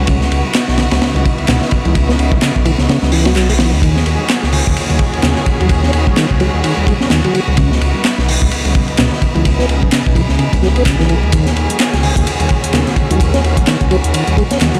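Breakbeat in a swaggering, energetic mood, this excerpt from a longer piece runs at 128 BPM in Eb phrygian with a swung sixteenth-note feel, cycling between Dbm11 and Ebm11 chords. A crunchy, saturated acoustic breakbeat kit sits up front with a tight kick, high-tuned snare, hi-hat and dark ride cymbal, its top end rolled off. Beneath it, a punchy analog drum machine adds overdriven handclaps and hi-hat re-recorded in a large room, while very quiet, thick-skinned congas enter at 0.4 seconds. A deep, rumbling detuned saw bass with tube saturation holds the low end, and a clean tonewheel organ riff shimmers through chorus vibrato, a slow rotary speaker and analog delay. A dark, bowed studio string section sustains expressive chords with vibrato and portamento, pumping under sidechain, and the whole mix has a dry, gritty hardware character in a small room.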